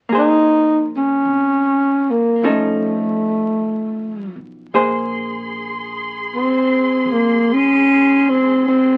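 A dark, clean archtop guitar opens this melancholic, intimate jazz ballad in Bb minor at a slow 52 BPM swing, joined at once by a woody, thumpy pizzicato upright bass sitting in the background and an up-front, breathy tenor saxophone whose whispered subtone and vibrato turn into a solo at 4.8 seconds, just after a distant, rich bowed string section enters at 4.7 seconds with smooth sustained chords, all heard through light reverb and the crackle of a very old 78 rpm record in this cut from a longer piece.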